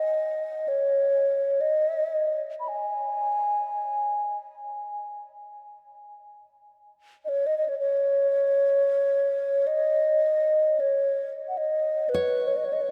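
A mellow, hollow alto flute with a wooden head carries the melody up front in this haunting, meditative world excerpt in free time, its pure straight tone and soft attack spanning B4 to B5 over a huge ambient reverb, while a fingerpicked nylon-string guitar adds full-bodied classical texture from 0.0 to 3.3 seconds and again from 12.1 seconds until the cut at 12.9 seconds.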